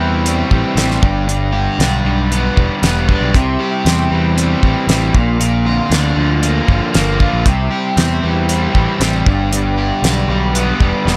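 A dry, damped 70s drum kit with a fat snare and tight kick sits up front, entering at 0.3 s to drive this confident classic rock excerpt in a straight 4/4. A growling, overdriven picked bass and an overdriven semi-hollow guitar with a hollow-body bite share the foreground, while a raw garage guitar adds a second picked riff. Underneath, a very quiet, lightly overdriven tonewheel organ holds shouting chords through a slow rotary speaker as the harmony moves between C, G and Bb in a nearly reverb-free room.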